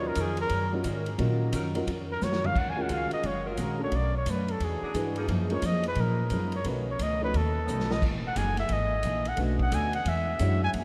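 Dramatic and swinging, this short cut of big band jazz moves at 176 BPM in Eb minor, with a 64% swing on the eighth notes. A mellow, punchy trumpet carries the solo up front from the opening second, its scooped notes and smooth top rising as high as Ab5 with real force. Beneath it, a woody pizzicato upright bass anchors the low end, a clear, natural upright piano and a full-bodied picked dreadnought guitar in the background fill out the accompaniment, and a distant, tight saxophone section holds very quiet sustained chords with light vibrato. The swinging acoustic drum kit, with its boomy kick, medium-tuned snare, ride, hi-hat, crash and toms, drops in fills around 2.2 and 7.7 seconds. The harmony drifts from Ebm7 through colourful chords such as Gbmaj13 and Emaj9#11, and a cathedral reverb with a 5.8-second tail places the whole band in a vast, echoing space.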